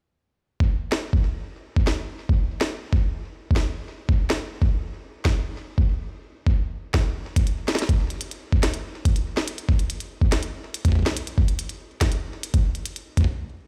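IDM at 142 BPM in a straight 4/4, this brief excerpt from a longer piece feels wistful and playful. A compressed, pitched-up electronic kick with a gritty, thumpy overdriven punch starts at 0.6 s, and a glitchy drum kit follows at 0.9 s with a tiny snare and clicky, tape-warm hi-hats trailing delay. Both parts sit up front, sounding as if played through a big sound system in a bare stone room, until they cut off together at 13.3 s.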